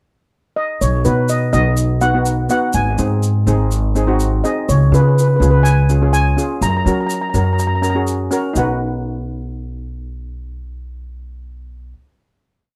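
A lead steel pan, struck with soft rubber sticks, opens a short pickup at 0.6 s with a mellow, shimmering tone, then carries a motif-based melody in sentence-like phrases through a bouncy, carefree calypso verse in B major at 124 BPM. Up front beside it, a woody, thumpy upright bass plays a syncopated pizzicato figure on gut strings. A second steel pan on hard rubber sticks adds bright, metallic triad chords, and a grainy, vintage tube shaker keeps the pattern going until 8.8 s, all in a dry, close 1970s-style studio sound with light reverb as the piece moves through B, G#, C# and F# and settles on a final B chord from 8.6 s.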